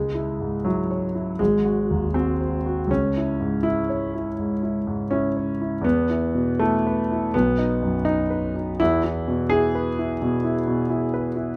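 In a flexible 4/4 pulled about by rubato, this romantic character piece for solo piano feels stormy and bittersweet. A concert grand plays alone for the full 11.6 seconds, reaching from deep bass at G#1 up to C#5. The harmony moves from C#m to G#7 and back to C#m, then passes through E5 and B before settling on E at 8.8 seconds. The piano sits up front with an intimate, natural tone, and the mechanical noise of its action is clearly audible. A moderate studio reverb adds a little air around the instrument, and the passage is cut from a longer piece.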